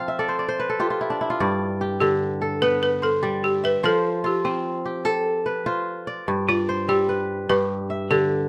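Rolling in 12/8 at 98 BPM, counted in dotted quarters with a straight feel, this joyful West African traditional piece in G mixolydian is cut from a longer performance and runs 8.5 seconds. A fingerpicked acoustic kora sits up front, its bright, ringing arpeggios reaching from low G2 to high A5, and it opens with a crisp fill that lasts until 1.4 seconds. Alongside it, a balafon played with hard rubber mallets carries the melody within a narrow span from F4 to B4, its woody, buzzing tone kept dry. The harmony moves between F and G chords, and a new section begins at 6.3 seconds on G. Close, detailed microphones and little reverb give the sound an intimate, warm presence, though lossy compression artefacts are audible.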